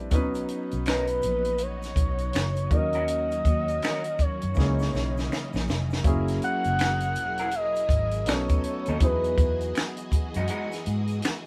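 Vinyl crackle and light room reverb frame a band playing live in this late-night, introspective neo-soul R&B excerpt at 81 BPM with a swung 16th feel, where a tight cocktail drum kit with a high-tuned snare sits up front beside a dark, round, foam-muted electric bass, a natural grand piano supplies the accompaniment, a shimmering, warbling string machine sustains violin chords under ensemble chorus, a very quiet egg shaker and group handclaps add texture, a smooth, gliding portamento lead with vibrato carries the melody from 0.9 s, a slightly broken-up, lo-fi electric guitar bathed in spring reverb plays a second line, and a drum fill at 4.6 s leads into the second section at 6.0 s.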